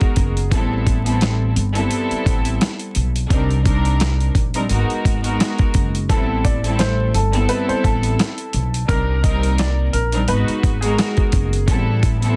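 A gritty, sampler-style drum kit sits up front in this dark, reflective boom-bap hip-hop excerpt, its thumpy kick, medium-tuned snare and hi-hat compressed into a dusty, swung groove. An acoustic upright bass joins at 0.2 seconds, plucked pizzicato with a woody, steel-strung thump low in the register. A studio string section, bowed sul tasto with a soft attack, plays throughout as a pure, floating ensemble bed near the front of the mix. A clear upright piano carries the melody in brief phrases, sounding only at the very start and again from 6.1 to 11.6 seconds, its long sustain touched by filtering and a delay. The harmony circles through minor ninth chords, and the dense, heavily limited master, dry with little reverb and overlaid with vinyl crackle, gives the cut a close, worn character.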